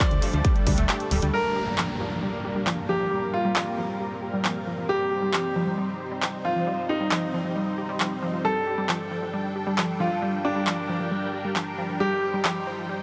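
Uplifting trance with a euphoric, soaring mood, cut from a longer piece, where a detuned sawtooth unison pluck plays sidechain-pumped arpeggios beneath a clear, up-front concert grand piano carrying a second line, both trailed by dub echo in a huge ambient reverb. An overdriven, layered electronic kick and a round FM bass drive the opening until a brief break at 0.9 seconds, after which the dry analog drum machine's handclaps and hi-hat, present from the very start, keep the rhythm going alongside the piano and pluck. An electronic downlifter sounds from 1.3 to 4.9 seconds over a Gm chord, after which the harmony moves on through Cm and Dsus4.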